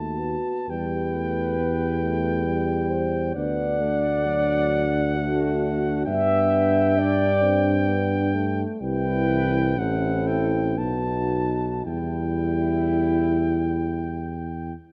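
Classical brass-band music in a hymn-like, elegiac and yearning mood, moving at a rubato 54-70 BPM in 3/4 in E minor, with a warm, present cornet singing the melody with light vibrato over a dark, punchy French horn section carrying a smooth-topped second line, two mellow euphoniums giving accompaniment (one distant, roomy and very quiet, the other set in the background), and an up-front tuba with a soft attack anchoring the bass, all heard through close, detailed microphones in light reverb as the harmony travels from Em through D, G and C, then F#m7b5/A and B7, before settling back on Em at 11.9 seconds.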